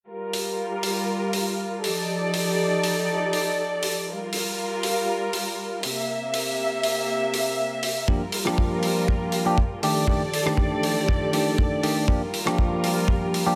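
Sensual and groovy, this nu-disco excerpt in G minor at 120 BPM opens with dark, woody bowed strings holding vibrato-laden chords through a low-pass filter and sidechain pumping, over a dry, damped 70s drum kit of hi-hat and rim click, until at 8.1 seconds a tight, up-front kick drum and a bright, bell-like tine electric piano with phaser, delay and its own pumping join as the Gm7 and F13 changes return, all in light studio reverb.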